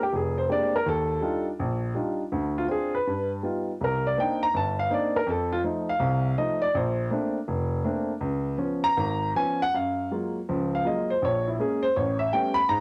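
A baby grand piano carries this relaxed, playful solo jazz passage alone, its warm, natural tone and long sustain sitting up front as it ranges from the deep low register to high treble. The playing swings its eighths loosely with a rubato feel, moving through rich extended chords such as Bb13, Ebmaj9 and Gaug7 before the harmony shifts at 9.7 s into F#maj9 and closes on A9 at 12.0 s. Moderate studio reverb surrounds the home cassette recording, a short slice of a longer performance that runs to 12.8 s.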